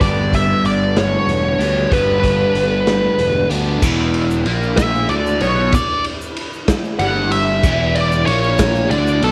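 Kaleidoscopic and hypnotic, this psychedelic rock fragment in a slow 6/8 sway sets an up-front, dark fuzz lead guitar with wah and slapback echo over a double-tracked crunchy overdriven guitar riff colored by phaser, a punchy fuzz picked bass, and a gritty, saturated garage drum kit with a punchy kick and rolled-off top. A very quiet, warbling string machine cello pad with ensemble chorus sustains chords underneath, moving from Gadd9 to E7(no3) at 3.8 seconds, where the lead guitar breaks into a solo and a grainy egg shaker joins in the background. Light studio reverb surrounds the mix, while the drums carry a bright stone-room character.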